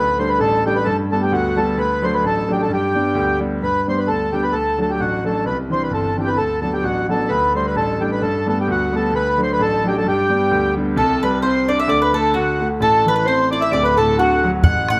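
A mellow, reedy accordion carries the melody up front in this cheerful, rollicking Celtic polka in G major, moving at 131 BPM in 2/4 with a swung lilt, while a bright grand piano with audible action noise and long sustain supplies the accompaniment. At 11.0 seconds, as a new section begins, a woody, double-strung mandolin adds a picked second line, and a tight, damped bodhran joins at 14.6 seconds just before this fragment of a longer piece cuts off. Close, detailed microphones catch the players within a moderate recital-hall reverb.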